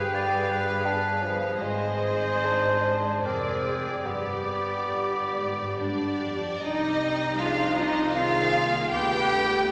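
In a rubato 3/4 pulse of 65-85 BPM, this elegiac, solemn slow romantic movement in C minor, cut from a longer piece, sets an up-front violin section singing the expressive melody with vibrato and portamento, while a distant, soft-attacked solo clarinet and an even background violin section carry second lines, a focused viola section, a solo bassoon until 6.2 s and a tight, mellow French horn section's sustained chords fill the middle, a lush double bass section and a rich, smooth cello section hold the bass, and a hollow, pure flute section joins at 5.8 s, the orchestra set in a wet church reverb.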